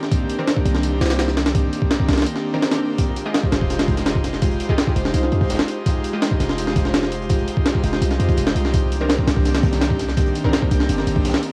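Drum and bass with a jungle edge at 167 BPM in F minor, this nostalgic, frenetic excerpt sets an up-front, gritty sampler breakbeat with a thumpy kick and high-tuned snare against a deep, boomy 808-style bass entering at 0.7 s, a breathy, detuned pad holding sustained Cm9 and Fm9 chords through chorus, 12-bit grit and cassette tape, punchy sawtooth orchestra-hit stabs with dub echo sitting in the background, and a very quiet, dark, saturated second breakbeat kit joining at 3.0 s after a short break, all steeped in a small-room, home-cassette sound with vinyl crackle.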